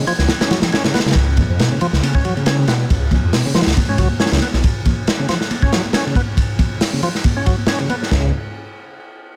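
A reverb-soaked, swaggering and gritty breakbeat cut with a light swing, driven by a crunchy, up-front acoustic drum kit with dark cymbals and a tight kick, an overdriven tonewheel organ riff colored by chorus vibrato, vintage sampler crunch and dub echo, a swirling, thick, phased saw bass that drops out at 4.6 seconds before briefly returning at 8.1 seconds, soft-handed congas in the background, and a faint, warbling tape-like pad of nostalgic sustained chords heard only until 1.1 seconds.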